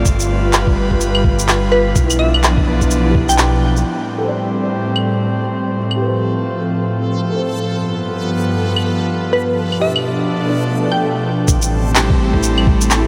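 A melancholic, nocturnal future garage excerpt at 126 BPM in A minor opens with a glassy wavetable pluck melody over a soft, felt-muted upright piano, an airy breathy pad and a dark, rumbling detuned saw bass, all three pumping against a thumpy, tape-warm kick and electronic shaker, handclaps and claves, before the kick and bass drop away. A reversed, granular swelling texture drifts in from 6.1 seconds, a very quiet swell rises at 10.8 seconds, and kick and bass return at 11.5 seconds, the whole dreamy mix soaked in huge ambient reverb.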